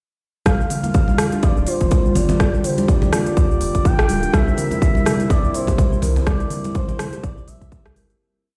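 At 0.5 s the full arrangement arrives at once as a drop. A punchy, layered electronic kick drives a four-on-the-floor pulse at 124 BPM in 4/4, swung at 57% on the sixteenths. Around it sit a programmed afro-pop kit of crisp hats, shaker, rim clicks and mid toms with a tape-like sheen, plus hard-handed acoustic congas in low and high voices, giving this afro house piece in G dorian a spiritual, earthy mood. A deep, round sine sub bass plays a syncopated riff in the background, a woody kalimba rings out a soft 12-step loop that drifts against the bar, and a detuned sawtooth pad holds smooth sustained chords with chorus, with the bass, kalimba and pad all pumping from the sidechain. On top, an expressive, dark sawtooth lead with chorus, delay, vibrato and a moving notch carries hook-like motifs over a Gm7 that shifts to C7 at 4.3 s. The mix sits in a light digital ambience with stone-room reverb, as if played on a big system in a bare room, and the piece fades out from 5.6 s to its close at 8.2 s.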